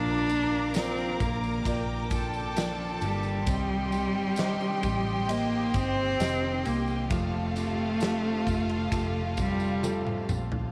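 A clear, focused solo cello carries the melody up front in this tender, hopeful pop ballad excerpt, its bowed line sung with vibrato and touched by a slapback echo, falling silent at 10.3 seconds. Behind it, a lush violin section with a smooth top traces a second line, while a bowed string section holds pure, floating chords with a soft attack. A woody, boxy upright piano sits in the background with accompaniment, and a very quiet jumbo steel-string acoustic guitar picks full-bodied arpeggios with a hint of finger squeak. A dark, round, foam-muted electric bass anchors the low end as the music moves at an unhurried 66 BPM in 4/4 through Bb, Cm and Fadd9 in Bb major. A huge arena drum kit in a pumping hall room, with bright cymbals, a fat snare and a punchy kick, joins at 0.3 seconds alongside a jingly, close and dry tambourine, and the drums play a fill from 9.8 seconds, all set in light reverb and studio ambience.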